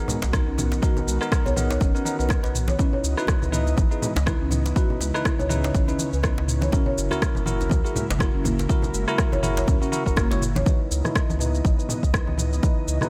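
A close, dry mix with little room sound frames this warm, earthy afro house excerpt, cut from a longer piece and driven by a punchy, overdriven electronic kick sitting up front. A deep, round sine sub bass carries the low end with a fast attack and sustained notes, pumping with the kick alongside the pad, marimba and electric piano. The produced afro-pop kit adds rim clicks, shaker and toms, while low-tuned congas with a thick, damped skin and a hard-hand djembe sit in the background, the djembe dropping out at 10.6 seconds. A woody marimba with soft mallets and a buzzing, gritty sampler tone plays arpeggios through tape echo until 10.7 seconds. A bell-like tine electric piano punctuates with bright, clean stabs, and an ethereal, warbling pad of detuned sawtooth with a noise layer holds slow-attack chords beneath it all, treated with chorus and its own reverb. After a drum fill, a filter sweep on the electric piano colours the closing bars from 10.7 seconds as the harmony moves from Bmaj7 through C#m9 and F#7 back to C#m9.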